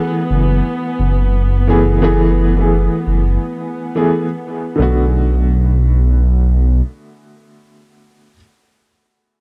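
A loping 87 BPM trip hop groove with swung 16ths opens this hypnotic, cinematic excerpt in B dorian, where a woody, boxy upright piano with tremolo, tape echo and gritty 12-bit sampler texture comps up front from 0.0 to 8.4 s, a soft-edged bowed chamber string section holds a sustained chord until 4.8 s, and a deep, rumbling detuned saw bass with tube saturation enters at 0.3 s under a filter sweep, all set in dark digital ambience as F#m11 gives way to Bm7.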